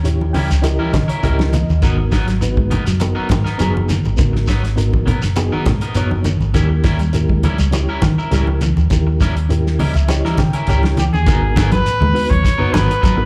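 Funky and intense, this afrobeat excerpt in 4/4 rides a straight groove, heard as a live gig through a club PA with small room ambience and light reverb. A dark, round fingered electric bass sits up front and punchy alongside a damped 70s drum kit with a fat snare, tight kick and rolled-off top, while hard-handed congas ring in the background with slapback echo and a grainy, saturated shekere adds texture. A reedy, worn electric piano, slightly out of tune and played through its built-in speakers with tremolo, supplies fills over the opening D#7b9 and again from 9.5 to 11.3 seconds. A twangy, bright guitar at the edge of break-up adds picked stabs with subtle chorus and slapback echo, as a clean semi-hollow guitar plays low fingered arpeggios in the background. At 11.0 seconds a clear, distant trumpet with light vibrato enters with a short solo melody, just before the harmony returns to G#m9.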